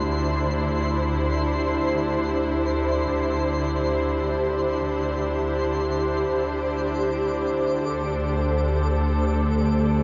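Ambient in free time and a serene, melancholic mood, this excerpt sets veiled, con sordino strings holding sustained chords up front over a clear, bowed double bass section with tube saturation, while a twinkling granular texture with built-in reverb sparkles high above as it fades out, an evolving sawtooth analog drone with chorus joins at 7.8 seconds, and the harmony moves from D7sus2 to D7sus4 at 6.3 seconds inside a huge, wet reverb that keeps the sound dark at the top.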